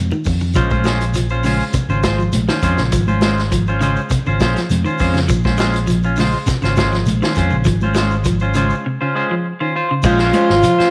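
Afrobeat with a defiant, driving mood, cut from a longer piece and resting on a single Bbm9 chord in a straight four. A vintage drum kit opens with a fill, its punchy kick, medium-tuned snare, dark cymbals and rolled-off top set mid-forward, while a round, dark fingered electric bass holds the low end. One clean electric guitar plays warm picked arpeggios in a low register, and a second, bright and up front with slapback echo, cuts in with stabs from 0.6 seconds. Congas with a thick, high-tuned skin and soft hands sit in the background beside a grainy, mellow shekere. After a break at 8.9 seconds, a whispered, breathy trombone with vibrato slips in at 10.0 seconds with a second line in the background, and a raspy, gritty alto saxophone bursts in up front at 10.1 seconds, all inside a small room with light reverb.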